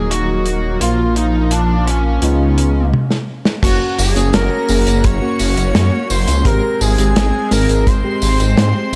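Moody and driving, this 85 BPM synthwave excerpt sets a dark, distorted bluesy lead guitar with digital delay over smooth, sidechain-pumped supersaw chords, stabs from a round FM electric piano with chorus and phaser in the background, and a thick, detuned saw bass up front, while a small-room acoustic drum kit with gated reverb plays a fill during a stop from 2.9 to 3.6 seconds, after which a tight kick drum and an airy, dreamy lead with vibrato and portamento enter at 3.6 seconds under light reverb.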